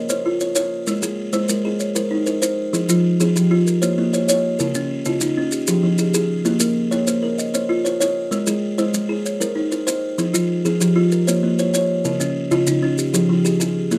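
Trance-like and hypnotic, this southern African traditional excerpt in Bb dorian moves at 129 BPM in 12/8 with a straight feel, built on an mbira-style interlocking cycle where an up-front buzzing kalimba with a woody, ringing tone and a second, darker and smoother kalimba spin arpeggios through Bbm, Ab, Fm and Db, while grainy, close and dry maracas enter at 0.1 seconds, all captured with close, detailed microphones and light reverb.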